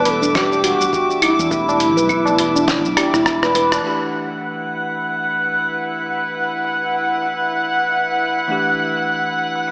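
Drenched in a lush hall reverb yet heard as if through a small speaker, this earthy, swung organic downtempo fragment opens with a breathy, chiffy wooden flute melody over ringing handpan arpeggios, a round fretless bass, bell-like tine electric piano, and reedy, gut-toned chamber strings pumping under sidechain. A gritty, dusty sampler-style kit of snare, hi-hat, rim click, claves and shaker sits up front, with low-tuned tabla and a thumpy background kick adding weight until a drum fill and band accent close the opening passage by 3.8 seconds. From 4.3 seconds a calm, glassy harmonics texture drifts in with chorus, hovering over the piano, strings and drums.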